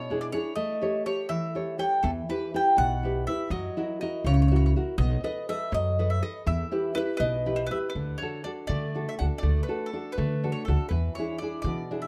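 A lightly reverberant, rough home-demo sound frames this short cut from a longer Italian folk serenade, passionate and romantic, moving in a straight 6/8 at 81 BPM in E harmonic minor before turning to D major at 7.9 s. Up front, a mellow, round mandolin picks the melody on its doubled strings, while a dark, full-bodied nylon-string guitar fingerpicks a deep classical accompaniment, both bathed in plate reverb. At 2.0 s a woody, thumpy upright bass with gut strings joins in pizzicato, anchoring the harmony from below.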